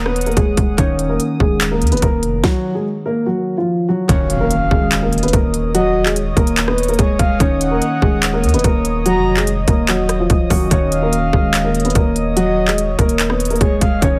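This melancholic, menacing trap excerpt in Eb minor opens on an Ebm7 voicing, with a dark, boxy grand piano carrying the melody up front through tape echo, its action noise audible, over fingerpicked harp ringing in the background, a warbling lo-fi pad and a deep, mellow 808-style bass, all moving in a half-time feel at 145 BPM. The hard-clipped kick, sharp snare, crisp hats, handclaps and rim clicks of the electronic kit sit up front, a stop arrives at 2.4 seconds, and a very quiet impact at 4.2 seconds ushers in a breathy, flute-like synth lead with chorus, vibrato and tape echo as a second line from 4.3 seconds. The mix has light reverb and a heavily compressed, radio-like sound.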